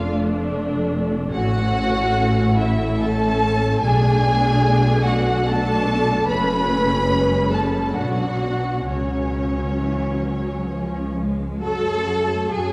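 Bathed in a dark, wet concert-hall reverb, this elegiac, yearning excerpt from a slow romantic movement for string orchestra unfolds in 3/4 at 64-76 BPM with a rubato feel in F# minor. One lush violin section carries the melody with soft-attacked, expressive vibrato while a second, more focused violin section sings a smooth-topped second line beneath it, and the violas fill in the accompaniment with gliding portamento. A rich, close cello section sits in the background on the bass, while a distant-sounding chamber double bass section stands up front, its bowed low notes gentle and expressive, as the harmony moves from Dm/F through Bm7 and C# to settle on F#m at 11.6 seconds.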